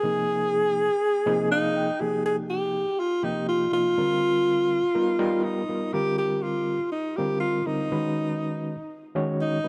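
A moderate plate reverb with a long tail surrounds this nocturnal, slick jazz fragment in F minor, cut from a longer piece and swinging at 122 BPM. Up front, a breathy, close-miked alto saxophone carries the melody in a mellow subtone with vibrato between Eb4 and Ab4, while a gritty, barky overdriven reed electric piano with fast tremolo, played through a combo amp, supplies accompaniment across a broad range and adds a fill from 1.0 to 2.0 seconds. The harmony opens on Fm11, moves through altered and suspended chords after 2.0 seconds, and comes to rest on B at 7.9 seconds.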